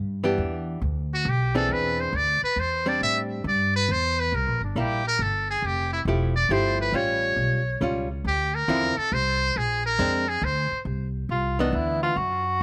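Jazz in a swinging, sophisticated small-group swing and bop vein at 137 BPM in 3/4, cut from a longer piece in C major, where a woody, thumpy pizzicato upright bass and a dark, clean, compressed hollow-body archtop guitar with slapback echo support a buzzy, brilliant trumpet with metal mute soloing with vibrato from 1.1 seconds before a tenor saxophone, warm with subtone and scooped notes, takes over at 11.3 seconds, all in a dry outdoor sound over chords moving from Em7 through Fmaj9 and Bb9 to Cmaj9.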